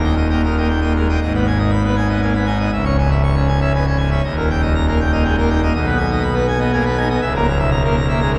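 A classical organ toccata in G# minor at 119 BPM in a straight 3/4, majestic and stormy, this fragment cut from a longer piece features a solo pipe organ on full registration with brilliant mixtures and romantic voicing, spanning C#1 to C#6 and sitting up front despite being heard from further back in a wet cathedral with a long 4.8-second reverb and vinyl crackle, as the harmony moves from D# into G# minor at 1.2 seconds and on through C# minor and D# before closing on an A# diminished chord over C#.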